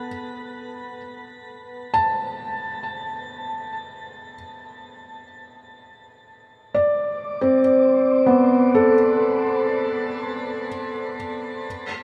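This ambient excerpt drifts in free time, tuned to A4 = 441 Hz, with a luminous, serene mood resting on a Bm7 chord. A felt-muted upright piano plays solo from 0.0 to 11.7 s, ranging from B3 to A5, its mellow, intimate tone sitting up front with audible action noise and a thin felt character, colored by tape echo. A wet shimmer reverb with a 9.0-second tail surrounds the piano.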